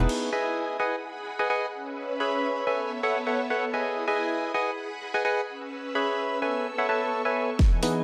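A moderate digital room reverb gives this feel-good, uplifting piano house excerpt a polished sense of space, with a 128 BPM 4/4 pulse and a light swing on the 16ths. Up front, a hollow, percussive organ stab plays a riff throughout the 8 seconds, its fast-attack, decaying tone roughened by vintage 12-bit sampler grit and trailed by chorus and tape echo. Beneath it, a shimmering, bright string machine holds sustained violin chords with a slow attack and ensemble chorus, and both the strings and the organ stab breathe with sidechain pumping. The harmony cycles twice through Emaj7, G#m7, C#m7 and B9sus4, keeping the mood buoyant and open. The house drum kit appears only briefly, around 0.1 s and again in a drum fill from 7.6 s, its crash, hi-hat and cracking snare joined at the fill by a single punchy, tape-warm electronic kick.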